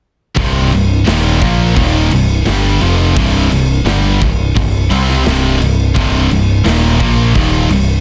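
A bright, high-gain guitar riff opens at 0.3 s, joined at 0.4 s by a second, double-tracked high-gain guitar and a sludgy, overdriven guitar sitting in the background, plus an up-front, growling picked bass with overdrive and a big, dark studio drum kit with a punchy, softly clipped kick, crash and snare, together driving an aggressive, epic heavy metal passage in C minor at 86 BPM over a single Cm chord, cut from a longer piece and finished with a dry, dense, heavily limited modern master.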